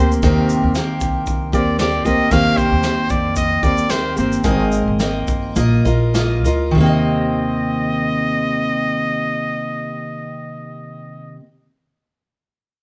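Acoustic pop with a sunny, carefree mood, in Eb major and 4/4 with a light swing on the sixteenths, moving at roughly 98 to 115 BPM and slowing down between 2.3 and 6.8 seconds. A bright, up-front trumpet carries the melody in a pop style, singing with vibrato in a narrow upper range, while a picked steel-string acoustic guitar with fresh strings and a full-bodied, jumbo tone provides accompaniment close to the listener. Underneath, a pizzicato upright bass on steel strings adds a woody, dark foundation. A vintage brush drum kit with a punchy kick, medium-tuned snare and shaker sits mid-forward with a rolled-off top, dropping out at 6.6 seconds so the trumpet, guitar and bass carry the closing phrase on their own. The chords move from Cm7 through Eb6, Abadd9 and Bbsus4 before landing back on Eb6 at 6.8 seconds, all captured as a band playing live in one large studio room with a moderate reverb and a soft, mellow top end in this short excerpt cut from a longer piece.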